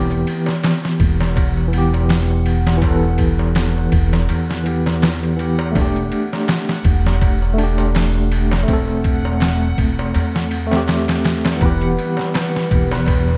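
Trip hop at 82 BPM in E minor with a brooding, cinematic mood, this excerpt sets a clean, up-front tine electric piano with tremolo and tape echo over a woody pizzicato upright bass and a gritty, pitched-down sampler-style drum kit with a thumpy kick and overdrive, while a crisp, distant metal-shelled darbuka plays in the background, a reversed, granular, dreamy texture drifts in at 1.1 seconds, and at 11.6 seconds a shimmering hammered cimbalom melody with 12-bit sampler grit arrives alongside very quiet, lush bowed strings, all under studio reverb and vinyl crackle.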